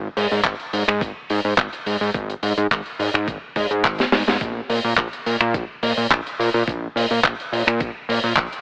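Filtered through an AM-radio sound with light reverb, this short, sunny, feel-good nu-disco cut at 106 BPM in straight 4/4 rides on a fat, thick, detuned sawtooth analog bass with a filter sweep and sidechain pumping, sitting up front beside a dry, tight funk kit of finger snaps, handclaps, hi-hat and a high-tuned snare that breaks into a fill at 4.0 seconds, while a thumpy, tape-warm electronic kick, re-recorded in a large room, sits lower in the mix.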